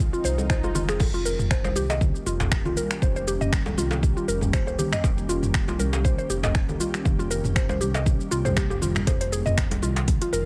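A deep, tape-warm electronic kick sits up front in this driving, hypnotic afro house groove at 119 BPM, entering at 0.5 seconds and anchoring a 4/4 pulse with a 55% swing on the sixteenths. Around it, a layered deep house kit brings metallic hats, finger snaps, shaker, toms and a crash cymbal, while background congas with hard hands and a tight, cracking, compressed djembe add acoustic texture. A smooth, dark synth bass glides between low notes with portamento and vibrato, and a woody, round FM pluck spins chorused, delayed arpeggios above, both breathing with sidechain pumping. An ethereal, detuned pad holds sustained chords with a slow attack and ensemble chorus, and a faint electronic swell sounds in the background from 0.2 to 1.0 seconds. The harmony moves from Fm7 to Eb7/F and returns to Fm7 at 9.1 seconds in this short, dry-sounding cut from a longer piece.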